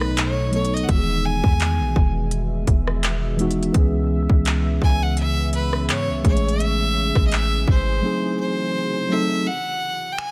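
From the first beat, a biting, up-front fiddle melody with light vibrato and tape echo sings over mellow tine electric piano, a dark, detuned ambient pad with chorus and reverb in the background, a boomy sine 808 bass and a trap kit of hard-clipped kick, crisp hats, finger snaps, handclaps and rim clicks in this sensual, late-night contemporary R&B excerpt at 84 BPM in C# minor with a light 16th-note swing, the bass dropping out at 8.0 seconds on a G#7b9 chord while fiddle and drums carry on to 10.3 seconds.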